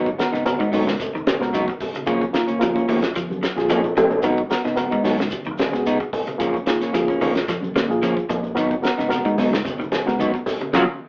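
Carrying an AM radio sound and a moderate small-room reverb, this hypnotic, defiant afrobeat excerpt sets a reedy electric piano with fast tremolo against a dark, slightly broken-up electric guitar playing stabs up front, a clean picked guitar arpeggiating in the background, a round, punchy fingered bass, a thuddy cloth-damped drum kit with a fat snare and tight kick that plays a fill at 3.2 seconds, low-tuned, thick-skinned congas and a grainy shekere, before a band accent at 10.7 seconds.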